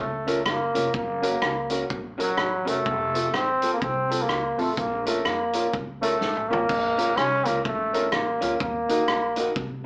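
A swung 4/4 ska groove at 125 BPM drives this mischievous, roughly ten-second cut from a longer piece in B-flat harmonic minor, with a vintage kit that sounds saturated and gritty with dark cymbals and a tight kick, and a drum fill at 6.2 seconds leading back into the repeated section. Up front, a bright trombone carries the melody with scooped notes and a roomy, distant tone, while a thumpy gut-string upright bass, a slightly detuned, woody upright piano playing stabs, and a lo-fi, slightly broken-up electric guitar with slapback echo sit behind it. The whole band plays live in one room under a wet reverb, with a small-speaker sound over chords moving from Bbm through Gb and F back to Bbm and on to Ebm at 8.6 seconds.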